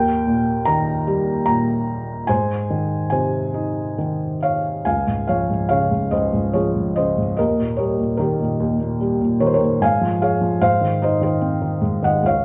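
A felt-muted upright piano plays alone and up front in this calm, lyrical classical excerpt, its soft, intimate, vintage tone carrying audible action noise as it moves freely in a rubato three-beat lilt. The harmony shifts to a new key at 4.8 s, opening a second section that runs to 12.4 s. A moderate recital-hall reverb surrounds the piano, and a worn cassette-tape quality adds a warbling pitch drift.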